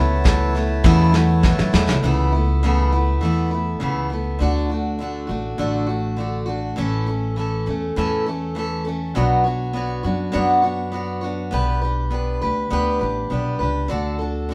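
A straight, even 4/4 pulse carries this gentle, nostalgic acoustic folk excerpt, played by a small band live in one room with moderate studio ambience. A picked steel-string parlour guitar with fresh strings sits up front, carrying the accompaniment throughout, while a pizzicato upright bass on gut strings adds a woody, thumpy low end beneath it. A close-miked, reedy hand-pumped harmonium holds full, breathing sustained chords in the opening moments, and a soft brush kit, dark and smooth with a tight kick and medium-tuned snare, joins at 0.3 s and plays a drum fill before both fall away at 2.0 s. From there, guitar and bass carry on as a duo, moving through chords such as D, Bmadd9 and G/B. The sound is intimate and mellow, with a rolled-off top on the drums and a dry closeness to the harmonium.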